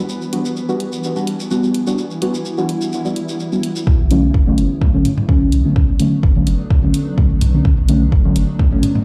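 Bathed in a lush hall reverb, as if played through a big sound system in a bare room, this hazy, meditative dub techno excerpt opens with a cloudy granular pad under a filter sweep, soft, dark chord stabs trailing chorus, phaser and dub echo, a bubbling, resonant stepped-filter texture in the background and a layered electronic shaker and hi-hat, until at 3.9 seconds the bubbling texture stops as a smooth sine sub bass and an up-front deep kick arrive, joined at 4.8 seconds by overdriven analog toms, while the pumping chords shift from Em7 to Bm7.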